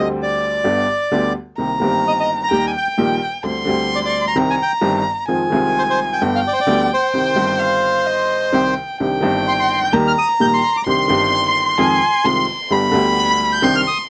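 Loose and rubato over a 4/4 pulse, this dramatic, passionate tango fragment is cut from a longer piece and opens with a reedy bandoneon carrying the melody over a bright, woody upright piano whose short-sustained accompaniment comes with audible action noise. At 1.6 seconds a single bowed violin joins with a rich, expressive second line full of vibrato and portamento, while the harmony circles through minor chords across two matching passages. All three instruments sit up front in a close, detailed and nearly dry recording that feels intimate.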